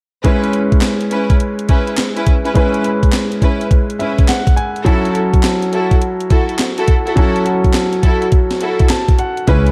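An up-front concert grand piano, clear and intimate with audible action noise and long sustain, carries this bouncy, slick new jack swing excerpt, playing accompaniment over C#m7 and F#m7 and breaking into fills at 3.7 and 8.6 seconds. A gated 80s digital drum machine with a thumpy kick, gated reverb snare, handclaps and hi-hat drives the swung groove, while a focused studio string section adds bowed stabs with vibrato. A punchy, round FM bass appears only at 9.5 seconds, just before the cut, all set in a dark production with light small-room reverb.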